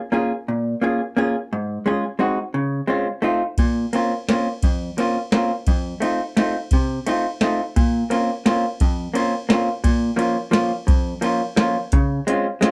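Nostalgic and bittersweet, this musette waltz moves at 173 BPM in a straight 3/4, a short cut from a longer piece. A vintage hollow-body electric jazz guitar carries the accompaniment from the opening, its dark, clean, picked tone compressed and placed up front, ranging from F2 to Ab4. The harmony begins in Db major, passing through chords such as Bbm7, Ab7 and Dbmaj7 before an F7 leads into a shift toward Bb harmonic minor at 3.6 seconds. At that moment a soft vintage analog rhythm box joins, also up front, with a deep kick, a tonal snare, metallic hats and a ride cymbal, all with a tape-warm character. The second passage circles between Bbmadd9 and F7, settles on Bbm, then returns to Dbmaj7 at 11.9 seconds, and a moderate small-room reverb of about half a second surrounds the pair.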